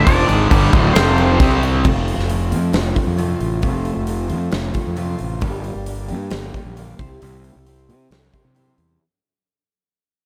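Dark and brooding, this short excerpt of quiet-loud alternative rock at 134 BPM opens with a burst of fuzz guitar and high-gain distorted guitar riffing low over Dm, F5 and C5, while a twangy electric guitar with tape echo sits in the background playing melody, all three stopping by 1.8 seconds. A growly, overdriven fingered bass and a huge arena drum kit with a fat snare, punchy kick and bright cymbals stay up front throughout. From 1.8 seconds a jumbo steel-string acoustic guitar enters with full-bodied picked arpeggios and audible finger squeak over F, Gm and C as the piece fades out in a dry sound.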